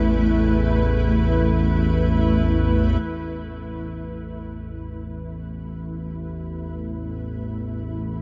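A low analog drone sits up front through this short cut from a longer dark ambient piece, its vintage sawtooth and pulse-wave tone warbling and evolving under chorus between A1 and E2. Above it, a cloudy, blurred granular pad holds sustained chords from A3 to B4 in free time, built on detuned sine voices in unison, resting on an Asus2 chord with tuning at A4 = 437 Hz. Very quietly in the opening seconds, gamelan-type bossed gongs play soft, mellow arpeggios on E3, their bronze, metallic strikes from padded beaters ringing with a round, beating shimmer until 3.5 seconds. A barely audible bubbling texture of resonant, detuned sawtooth with random filter steps adds a bright glint alongside them before stopping at 3.1 seconds. From 3.0 seconds the drone and pad fade in together, and a huge ambient reverb with a long 7.6-second tail wraps the dark, warm production in a cavernous, desolate space.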